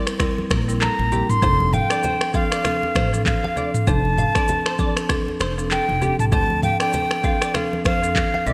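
Bright, percussive marimba struck with hard mallets opens this breezy, romantic afrobeats excerpt in F major, joined at once by a clean, compressed electric guitar riff sitting in the background, coloured by ensemble chorus and digital delay. An electronic afro-pop drum kit enters at 0.1 seconds, up front and overdriven with gated reverb, its deep kick joined by finger snaps, handclaps, rim clicks, shaker and toms, while close, dry congas played with hard hands tuck in behind. A plucked upright bass arrives at 0.5 seconds with a woody, steel-strung tone in the low register. At 0.8 seconds an airy, reedy concert flute takes the melody up front in a straight, tongued tone. The groove sits at 98 BPM in 4/4 with a light sixteenth-note swing, the harmony moving from C7 to F6 and later Dm7, tuned slightly flat to A4 = 436 Hz. Light reverb and a bright 1980s-style digital production frame the whole passage.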